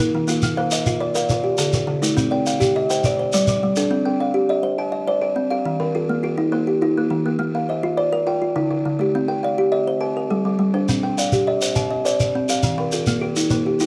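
Southern African traditional music in an mbira-style interlocking cycle at 138 BPM in a straight 12/8, tuned to a C equiheptatonic scale, where a dry, close-miked kalimba with a woody thumb pluck and a buzzing, ringing kalimba with a hollow-box body weave rippling arpeggios over chords such as Bb, Dm, Cm and Eb, while a grainy, mellow shekere adds percussion from 0.3 to 3.9 seconds and returns at 10.9 seconds, all under light reverb in this warm excerpt from a longer piece.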